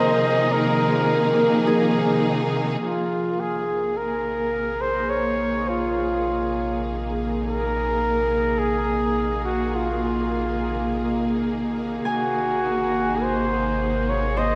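A slow, straight 4/4 pulse at 52 BPM carries this serene, spacious ambient passage, cut from a longer piece, where a clear, close-miked flugelhorn sings the melody in classical style through tape echo over lush, vibrato-rich symphonic strings holding sustained chords. A bright, ringing Celtic harp adds fingerpicked arpeggios with tape echo, dropping out at 5.1 s and returning at 12.1 s, while a nasal, tense string-like drone hums beneath with its own built-in reverb. A deep, round sub bass fades in with the strings at 2.8 s as the harmony moves from Ab/C to Bbsus2 and later Ab7, all bathed in a dark, warm production and a long, wet hall reverb.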